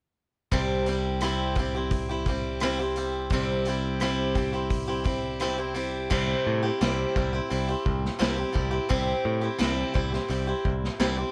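A picked acoustic guitar with fresh strings and a boxy tone sits up front, playing a swing-style accompaniment in this open-road, nostalgic slice of folk rock and heartland rock, cut from a longer piece. Beneath it, a direct-sounding picked electric bass and a vintage drum kit in a small room, with dark cymbals, a tight kick, a medium-tuned snare and rim clicks, hold a straight feel, moving into a second section at 6.1 seconds. The whole recording carries light reverb and the worn, warbling pitch drift of old cassette tape.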